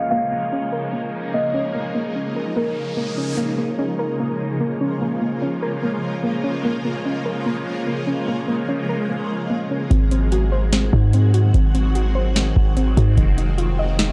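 A booming analog drum machine with a deep kick, crisp snare and metallic hats arrives up front at 9.9 seconds alongside a deep, boomy 808-style bass, grounding this hazy, ethereal cloud-rap excerpt in Bb minor at 147 BPM in a half-time feel. Before that, a woody kalimba melody rings briefly over a shimmering, detuned ambient pad with chorus and phaser, a soft round pluck playing dark arpeggios through tape echo, and an airy, breathy wind-like texture in the background, while a filter sweep and a riser lead into the next section at 3.4 seconds. The chords move from Bbm7 to Ab7 and Fm7 in a digital ambience with a dry, gritty hardware character.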